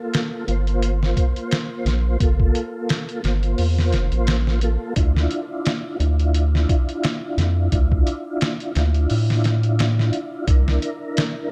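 A round, deep analog bass with a filter-plucked attack sits up front in this hypnotic, cinematic trip hop excerpt in D minor at 87 BPM with a light 16th-note swing, alongside a muffled, compressed, pitched-down sampler-style drum kit of thumpy kick, medium-tuned snare and hi-hat. A smooth tonewheel organ with key click, chorus vibrato, slow rotary speaker, tremolo, tape echo and 12-bit sampler grit sits further back over Gm7, Dmadd9 and C7, all in a dark, warm digital ambience.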